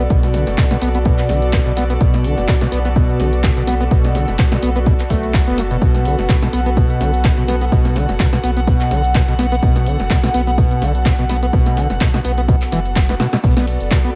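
A swung sixteenth-note groove drives this gritty acid house piece, anchored by a punchy, tape-warmed electronic kick that enters at 0.1 s and an analog drum machine supplying handclaps, hi-hat, snare and crash cymbal in a short room, capped by a drum fill at 13.1 s. A squelchy, resonant sawtooth acid bass riff with a filter sweep, tube saturation, analog chorus and analog delay rides over a deep, round sine sub bass, while a bowed studio string section holds smooth, reedy sustained chords on Bm7 with a period gut-string tone. The strings, acid bass and sub bass each pump against the sidechain, and the echo-heavy mix carries light reverb.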